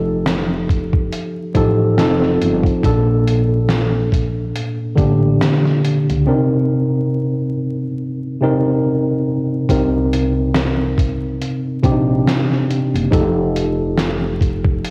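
Lo-fi hip hop in a hazy, reflective mood at a slow 70 BPM with a gentle 16th-note swing in C dorian, this excerpt from a longer piece places a worn, slightly out-of-tune tine electric piano up front, lightly overdriven, low-passed and tape-treated, moving through F9, Bbmaj7 and Cm7 over a woody, growly pizzicato upright bass, while a muffled, compressed sampler-style drum kit with a thumpy kick and medium-tuned snare joins at 0.3 seconds, all bathed in a lush hall reverb with the soft crackle of vinyl and home-cassette grit.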